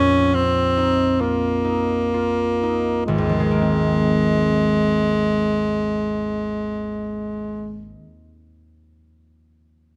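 In a free, rubato 4/4 that slows over the first 3.1 seconds, this dreamy, pastoral impressionist classical duo, cut from a longer piece, sets a bright, close-miked alto saxophone melody in the low part of its range up front over fingerpicked, ringing concert harp accompaniment, moving from a Bbsus4 chord to an Ab69 chord at 3.1 seconds in a moderate stone-room reverb before the saxophone stops at 7.9 seconds and the harp at 8.5 seconds.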